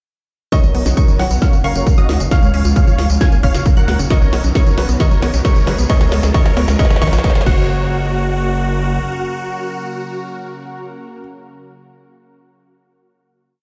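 Heard as if through a big sound system in a bare stone room, with little reverb and a dulled top end, this euphoric, uplifting trance piece is one long build that gives way to a final hit at 7.7 seconds. An up-front, four-on-the-floor electronic kick drives a techno drum kit of cracking snare, smooth hats, tambourine and crash playing a fill, while a gritty, distorted synth bass gallops in sixteenths and a huge, thick supersaw carries a repeating riff in thirds and sixths through a filter sweep, with sidechain pumping and tape echo. Behind them a lush, chorused pad holds the chords, a warbling vintage unison pluck runs an eight-step arpeggio with its own filter sweep until 7.9 seconds, a round analog pluck doubles the anthem an octave higher, a brilliant, worn baby grand piano repeats its own riff, and a very quiet riser enters at 2.5 seconds.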